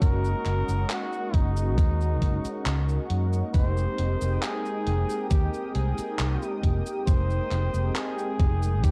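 A warm flugelhorn carries the melody with light vibrato and scooped notes, its tape echo drifting over a hazy, woozy vaporwave groove at 68 BPM, cut from a longer piece. Mellow, detuned synth brass with lush chorus and a filter sweep moves from Gb6 to Fm11 at 3.5 seconds, while a thick unison pad sits in the background. Up front, a round fingered electric bass and a thumpy electronic kick anchor the dark cassette-tape production, alongside a gated 80s drum machine playing cabasa, handclaps and hi-hat.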